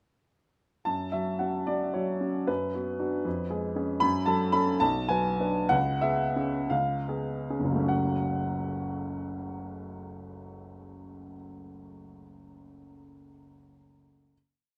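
Passionate and bittersweet, this brief romantic character piece for solo piano unfolds in F# minor at a rubato 47-80 BPM in 6/8, tuned to A4 = 445 Hz. A warm, open baby grand with long sustain sits up front, carrying a single-line melody over rocking two-note chords in the bass, spanning F#1 to B5 from 0.9 to 14.3 s. The music moves through Bm and C#7 harmonies, slows from 3.3 s, and settles on a final F#m chord at 7.9 s, captured by close, detailed microphones with light reverb.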